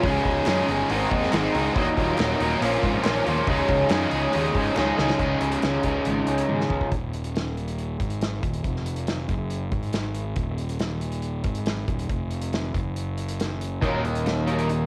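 Recorded at home on cassette in a small room, this moody, bittersweet indie rock fragment has a close, homespun sound, and it is cut from a longer piece. Two electric guitars play the riff together over a progression of Dbsus2, Ab, Ebm and Bbm: a bright, cranked stack guitar sits up front with overdrive, while an overdriven semi-hollow guitar adds a hollow-body tone coloured by analog chorus and tape echo. A fuzz picked electric bass, round and up front, and a loose acoustic drum kit with a medium-tuned snare, tight kick and pumping room sound carry the straight groove from start to finish, with short drum fills marking the turns. A very quiet group handclap appears early on. At 6.9 seconds both guitars drop out, leaving bass and drums to hold an Ebm passage until the guitars briefly return at 13.8 seconds.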